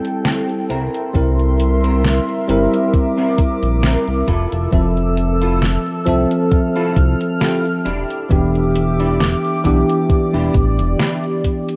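A slow 67 BPM vaporwave groove in 4/4 with a light 16th-note swing carries this nostalgic, melancholic fragment cut from a longer piece, as a sampler-gritty thumpy kick joins at 1.1 s beneath a detuned 8-bit drum machine's hi-hat and snare, and a glossy, dark chorused synth bass enters at 0.7 s. Up front, a bell-like tine electric piano with analog chorus and delay comps over Am7, C7, Fmaj7 and Em7, while a warbling, detuned tape-like pad holds mellow sustained chords and a clean, hollow-body semi-hollow guitar plays a quiet riff through ensemble chorus, delay and 12-bit grit. A filter sweep on clean electric guitar runs throughout, and the rough home-demo mix carries light reverb and a cassette tape character.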